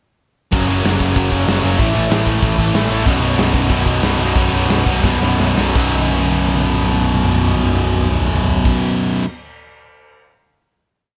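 A bright, punchy punk rock blast in B major at 160-190 BPM, where an up-front tight distorted guitar and a hollow-bodied overdriven semi-hollow guitar drive eighth-note power chords over F#, A and B, a double-tracked cranked stack guitar rings chords in the background, a growly overdriven picked bass pushes eighth notes, and a big-room rock kit with bright cymbals pounds a fast groove, slowing from 3.1 seconds with a drum fill into a final chord at 5.8 seconds, where further drum fills roll on as the guitars ring out to 9.2 seconds and the drums finish last at 10.2 seconds under light reverb for an upbeat, energetic whole piece.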